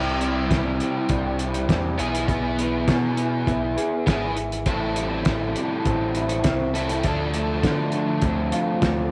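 An overdriven electric guitar sits up front with a compressed, ensemble-chorused riff, while a second, slightly broken-up electric guitar through a small old amp picks its own riff in the background of this jangly, carefree indie rock excerpt in straight 4/4. A bright, punchy picked electric bass and a cloth-damped, thuddy drum kit with a fat snare, tight kick and gritty, muffled hi-hat carry the groove through chords moving from Cadd9 to E/B, Am7 and Dm7. Light reverb and small room ambience surround the short passage.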